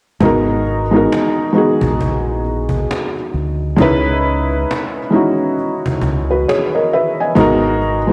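Hazy and melancholic, this short excerpt from a longer lo-fi hip hop piece drifts at 67 BPM with a swung feel in G# minor, as a soft, intimate felt-muted upright piano with cassette tape coloring sits up front over a dark, round, punchy fingered electric bass and a woody cajon with faint snares heard distant in a large room, all three playing from 0.2 to 8.1 seconds through G#m9 and C#m9 chords, wrapped in a moderate, lush hall reverb with the character of a home cassette recording.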